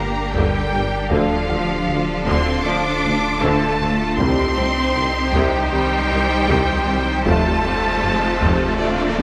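Drenched in the reverb of a large scoring stage, this short cut from a longer cinematic cue blends orchestra and electronics into a vast, futuristic sound at 78 BPM in a straight 4/4. Lush symphonic violins carry the melody high above a studio violin section on a second line, both bowed with smooth vibrato and set at a distance, while a viola section adds expressive accompaniment in the background. The low end is layered deep: a focused cello section and a very quiet double bass section, a punchy sub bass with a pitch-drop attack, and a warm, very quiet tuba. A moody, detuned ambient pad with chorus and ring modulation holds sustained chords, joined from 1.1 s by a mellow French horn section and a tight trombone section. Heavy-stick taiko drums play in the background with a compressed, saturated edge, and a felt-muted upright piano with audible action noise adds intimate texture until 7.3 s. 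The harmony moves from Gm through Dm and Cm to F, as a faint electronic riser enters at 6.7 s.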